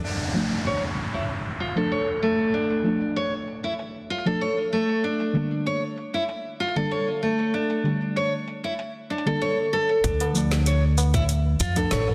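Fingerpicked nylon-string guitar arpeggios with audible finger squeak, an overdriven electronic afro-pop kit with a woody snare and metallic hats, and a brief downlifter open this mystical organic downtempo excerpt at 96 BPM in D harmonic minor, joined moments later by deep, warbling vintage chord stabs that pump under chorus and tape echo, before a thumpy pizzicato upright bass and a tight overdriven kick arrive at 10.0 seconds, followed just after by a low-tuned ringing tabla, all bathed in a lush hall reverb and a dense, heavily limited master.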